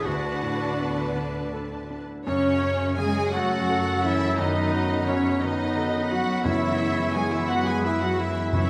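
Cinematic, emotional film score in a rubato 6/8, bittersweet and full of longing, cut from a longer piece and set in a wet scoring-stage reverb. A distant, intense violin section carries the lush melody over a bright solo clarinet, a second, smooth-topped violin section, an intimate grand piano with audible action noise, violas, an even-toned double bass section and expressive, soft-attack cellos. At 2.3 s a pure, very quiet flute group and a mellow, roomy French horn section holding sustained chords join in, a distant oboe enters at 3.3 s, and round, soft-mallet timpani arrive at 6.5 s.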